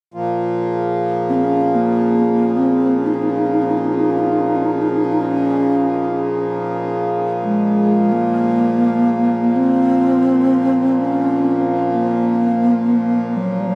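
A reedy, breathing hand-pumped harmonium opens at 0.1 s with a low drone in Bb minor, soon joined by a glassy, ethereal glass harmonica holding a single high note in shimmer reverb until 8.0 s. From 1.3 s a hollow bass flute carries the free-time melody up front, airy with vibrato and a crisp attack, its line trailed by shimmer reverb and delay. The mood is spacious and meditative, set in a huge ambient reverb with a dark, warm production, and the passage is cut from a longer piece.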